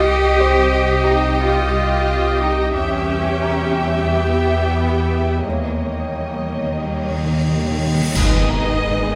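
Drenched in a wet scoring-stage reverb, this tense, uneasy suspense film score fragment sets a focused violin melody over a smooth second violin line, expressive portamento violas, glassy glass harmonica chords, a bright, phased bowed-like drone, a muted felt piano, a faint high violin texture, cellos and clear double basses, until calf-headed timpani enter at 5.4 seconds with dark clash cymbals and concert bass drum, and a huge cymbal swell and impact crest at 8.1 seconds as mellow French horn chords enter.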